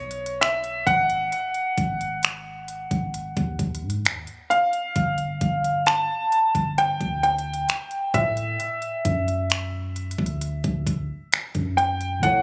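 Contemporary R&B at a slow 66 BPM in straight 4/4, this moody, longing excerpt is cut from a longer piece and sits in a light club reverb with the character of a phone recording in the room. An up-front grand piano carries the melody from the start, its long sustain trailing into delay, while a soft, round 808-style bass with a sine-like, dark decay rumbles beneath. From 0.1 seconds a trap drum kit knocks in with a kick drum, crisp hi-hats and finger snaps, sounding produced and tape-tinged. The harmony moves through suspended colours, from Bsus24 and G#5 to Gsus2 at 5.0 seconds and Dsus2 at 8.1 seconds. Only at 12.2 seconds do a mellow, clean tine electric piano and a faint, crystalline FM synth bell, warbling with chorus and tremolo in the background, slip in just before the close.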